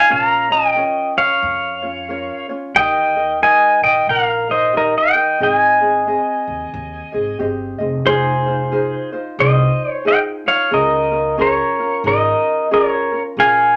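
A bright, clean electric pedal steel guitar carries the melody up front with slide, fingerpicks and volume swells over a mellow, lightly fingerpicked acoustic ukulele, joined at 0.1 s by a woody pizzicato upright bass, giving this sunny, languid, gently swung Hawaiian excerpt a relaxed studio glow that moves into a second section at 8.1 s.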